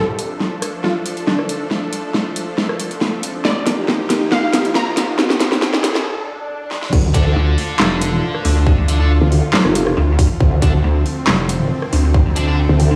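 A stone-room reverb and the boom of a big sound system in a bare space wrap this chaotic, heavy half-time wobble dubstep excerpt. It opens with a build-up: a lush, detuned supersaw pad pumps under sidechain while a bright, ring-modulated unison pluck carries the melody through digital delay, and a riser and swell hovers in the background as the dubstep drum kit, with its huge snare, metallic hats and tape-tinged claps and rim clicks, runs a fill. A brief break gives way to the drop at 6.9 seconds, where a punchy layered electronic kick arrives alongside a growling, formant-filtered bass that sits up front with chorus and overdrive. A pulsing, saturated pluck wobble bass joins it at 7.4 seconds, sharing the low register with the same sine-based weight. Meanwhile a double-tracked, distorted electric guitar fires picked stabs through its own delay, and the pad keeps sustaining its chords to the end.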